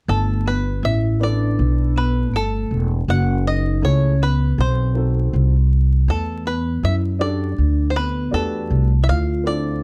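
Cool, relaxed hip hop at 80 BPM in G major with a swung sixteenth-note feel, where a twangy, fingerpicked bluegrass banjo carries the melody over a ringing, metallic vibraphone second line, both set in plate reverb, while an up-front, woody pizzicato upright bass anchors the low end and a mellow, smooth vintage upright piano with long sustain and plate reverb joins at 1.2 s, all within a dark production with vinyl crackle over chords moving from G69 through F#m7, B7b9 and Em11 to Dm7.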